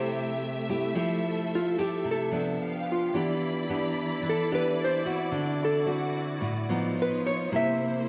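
Relaxed and sophisticated, this short bossa nova fragment in straight 4/4 features a dark, clean hollow-body electric jazz guitar carrying the melody as a solo across its full 8.1 seconds. Up front, a fingerpicked nylon-string classical guitar with fresh strings supplies the accompaniment, while a lush, softly attacked symphonic string section holds bowed, expressive chords with vibrato. A wet echo-chamber reverb surrounds the sound as the harmony moves through rich extended chords such as Fmaj9, Cmaj9/E and D9 before ending on C7.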